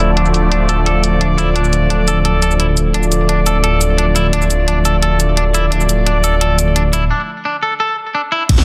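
Dark technical drum and bass at 173 BPM in D minor, this short excerpt cut from a longer piece feels aggressive and futuristic, resting on a single D minor chord. A thick, swirling detuned saw bass sits up front, its phaser and overdrive giving it a saturated growl, while an evolving, airy pad holds sustained chords with chorus and sidechain pumping. A clean, twangy electric guitar picks arpeggios through spring reverb, delay and a low-pass filter, and a mellow, distant brass ensemble punctuates with delayed stabs until 7.1 seconds, when a break begins. The drum kit pairs a cracking snare with bright hats, cabasa and crash cymbal, all filtered in a tight, dry mix under a dense, heavily limited master. At 8.5 seconds an impact lands with a knocking electronic kick and a barely audible, gritty breakbeat kit.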